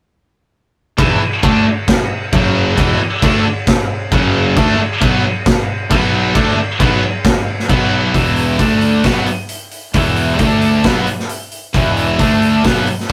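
This rough rehearsal-room recording has a gritty, tube-saturated edge and a moderate studio ambience, cut from a longer hard rock piece with an aggressive, driving straight feel in 4/4. From 1.0 s, an up-front overdriven electric guitar and a scooped, high-gain second guitar both play picked riffs. Beneath them, a fuzz-laden fingered bass adds a growly, overdriven low end. An acoustic drum kit sits up front in the room, with bright crash and hi-hat cymbals, a medium-tuned snare and a punchy kick. The opening passage moves through E5, F#5, D5 and B5 power chords, and from 8.2 s a second section settles into an alternation between E5 and D5 until the excerpt ends around 13.1 s.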